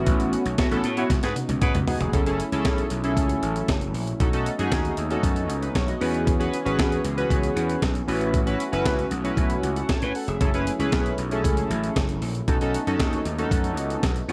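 This slick, funky cut of early-eighties boogie funk at 116 BPM in F# dorian opens with a glossy, chorused polysynth up front, a smooth detuned pad in the background and a growly, overdriven slap bass, with a compressed breakbeat-style kit entering at 0.1 seconds, featuring a thumpy kick and high-tuned snare. A tight, vintage horn section makes a brief appearance from 1.0 to 1.8 seconds while the drums play a fill leading into the main groove at 2.1 seconds. From there the chords move through F#m7, B7, E6 and A69 in a dry, close-sounding mix.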